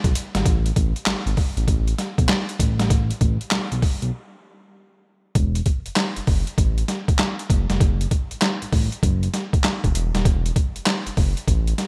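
Bright 1980s-style digital production with light reverb frames this upbeat, flirty R&B excerpt in a new jack swing vein, moving at 98 BPM in 4/4 with a 65% swing on the sixteenths. An up-front, boom bap sampler-style drum kit, compressed, pitched down and gritty, drives it with a thumpy kick, medium-tuned snare, hi-hat and handclaps, all overdriven and treated with gated reverb, while a smooth synth bass blends sawtooth and square waves with ring modulation into a dark, sustained low end with a fast attack. After a break at 4.1 seconds, a new section begins at 5.4 seconds, and the bass drops out at 11.7 seconds, just before the drums.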